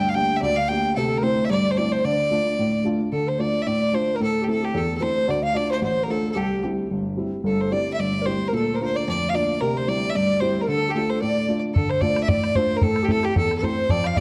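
Heard through a moderate recital hall reverb and a dark production, this lively, spirited Celtic reel in D minor races at 222 BPM with a light swing, as a biting, intense fiddle carries the melody up front beside a worn, slightly detuned upright piano, a pure, wooden baroque flute with a crisp attack adds a second line in the background, a warm cello with portamento holds a soft drone on D until 11.8 seconds, and a tight, damped bodhran then plays through to 14.2 seconds.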